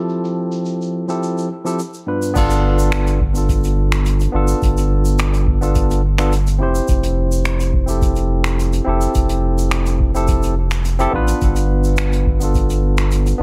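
Sunset chillout at 106 BPM in a straight 4/4, blissful and relaxed, taken from a longer piece. A barky, clean tine electric piano sits up front through a combo amp, its chords carried on tape echo and moving from G7 to Fmaj9 and back to G7. A jazz brush kit in a small room keeps a natural pulse of hi-hat, shaker, finger snaps and dark crash cymbal from the start, while a filter sweep shapes the opening 2.4 seconds. At 2.4 seconds a round analog bass arrives up front, deep with a fast attack and sustained sine-like tone, joined by a dry, overdriven electronic kick that stays in the background until 12.7 seconds. The whole is framed by a small room ambience softened with a low-pass filter, giving a mellow, intimate glow.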